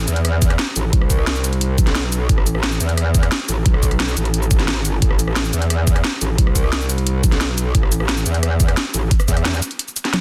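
Tense and mechanical, this short excerpt of dark technical drum and bass runs at 176 BPM in A minor, built on a metallic, wobbling FM bass with a fast attack and saturated, chorused sustain that sits up front between A1 and E2. A layered, overdriven drum kit of cracking snare, bright hats, rim click, cabasa and toms enters at 0.1 seconds, joined at 0.4 seconds by a knocking, overdriven electronic kick, both re-recorded in a small room and placed close to the listener. The dense, heavily limited mix carries little reverb, keeping the whole 10.2-second passage dry and aggressive.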